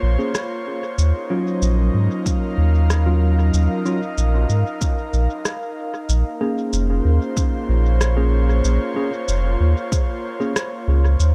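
An airy, breathy pad and a round, sine-like sub bass open this hazy, meditative ambient dub passage in a steady, straight 4/4. The pad holds soft sustained chords with a gentle chorus, while the bass sits up front with a touch of tube saturation. Almost at once a worn, slightly out-of-tune tine electric piano adds mellow stabs soaked in dub echo, and an electronic rim click and shaker with a small-room character carry their own echoes. A layered, deep electronic kick drum arrives at 2.3 seconds and stays up front until 10.1 seconds, as the harmony moves from Bbm7 to Ebm9 and back to Bbm7 when a second section begins at 6.1 seconds. The mix is dry of reverb yet heavy with echo, and the music feels like a fragment lifted from a longer piece.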